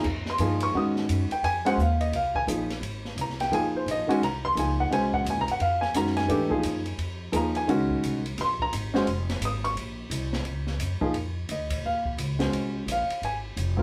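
Modal jazz with a cool, hypnotic mood, swung in 4/4 and cut from a longer piece. A baby grand piano carries the accompaniment up front, its intimate, natural tone marked by audible action noise and short sustain. Beneath it, a pizzicato upright bass on steel strings sounds woody and growly. An open acoustic drum kit sits lower still, with a small-room character, dark cymbals on crash, ride and hi-hat, a high-tuned snare and a boomy kick. The harmony moves from Fm7 to Bbm7 at 5.6 seconds and returns to Fm7 at 11.1 seconds as the opening section repeats, with the trio playing live together in one room under moderate studio reverb.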